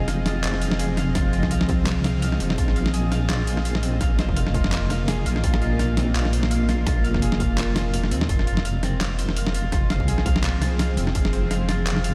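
Dark and spacious, this half-time drum and bass excerpt at 168 BPM in F minor rests on a single Fm7 chord, with a swung 16th feel and a dreamy mix soaked in a huge ambient reverb. A deep, wobbling sawtooth bass with chorus sits up front, while a tense, nasal string-like drone holds sustained chords with vibrato and sidechain pumping, and a twangy, slightly broken-up electric guitar picks arpeggios through delay. A gritty, pitched-down sampler-style kit of handclaps, hi-hat and overdriven snare enters at 0.1 seconds, joined at 1.2 seconds by a distorted, tape-warm electronic kick that drops out at 11.2 seconds.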